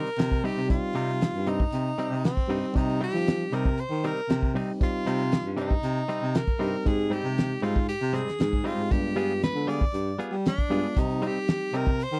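Over a straight-eighth 4/4 groove from an up-front soul drum kit with a fat snare and tight kick, this mournful, soulful blues fragment sets an edgy, forceful tenor saxophone melody with vibrato and scooped notes above a mellow, subtoned baritone saxophone bass line, while a bright, twangy clean electric guitar plays stabs and a gritty, barky overdriven electric piano sits in the background, all moving from Cm through Abmaj7 and G7b9 back to Cm in a dry sound.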